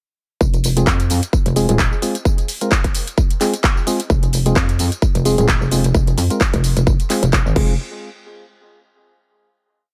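Dry and close, this bouncy, gritty bass house piece at 130 BPM in F minor swings its 16ths as a metallic, saturated wobble bass with chorus and sidechain pumping drives the drop over a punchy four-on-the-floor electronic kick and a big-room dance kit of handclaps, tambourine, hi-hat and crash, while hollow, organ-like stabs with dub echo enter at 0.8 seconds with dark syncopated chords before the drop ends in a final hit at 7.8 seconds.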